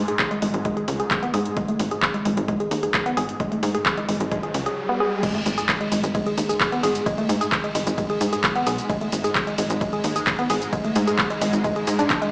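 A woody, wave-folded pluck carries the riff through chorus, overdrive, cassette-tape grit and dub echo, pumping against a tight, nasal sawtooth sequencer bass and a swarming, detuned drone that hovers in the background in this driving, hypnotic peak-time techno cut at 131 BPM. A punchy analog kick anchors a layered, tape-warm kit of handclaps, hats, shaker, ride and crash, whose hats, cymbals and percussion breathe with sidechain pumping. A riser enters at 3.5 seconds and drops at 5.2 seconds into an impact and sub drop, all set in a plate-reverb room that sounds like a big sound system in a bare space heard through small speakers.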